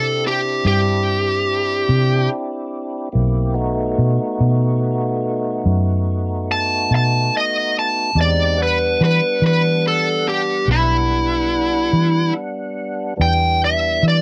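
Brooding and smoky, this slow minor blues excerpt in 12/8 moves at 48 BPM through C, B7 and Em9, with a bright, overdriven lead guitar carrying the melody up front. Beneath it a fat tonewheel organ holds sustained chords through a slow rotary speaker, with chorus vibrato, light overdrive and audible key click. A dark, round, foam-muted fingered electric bass anchors the low end, and the whole home cassette recording sits in light reverb, with the guitar and organ carrying tape character.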